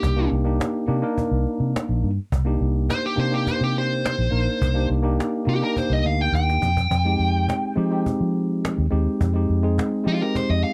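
A dry, close 1970s-style studio sound frames this brooding, smoky straight-eighth soul blues at 105 BPM in C minor, cut from a longer piece, where a smooth, dark, overdriven lead guitar solos up front over a worn, slightly out-of-tune tine electric piano heard through its built-in speakers, a round, punchy, foam-muted vintage fingered electric bass and a snappy cajon played with soft hands that adds a fill at 6.3 seconds, just before the harmony moves from Cm7 to Fm7.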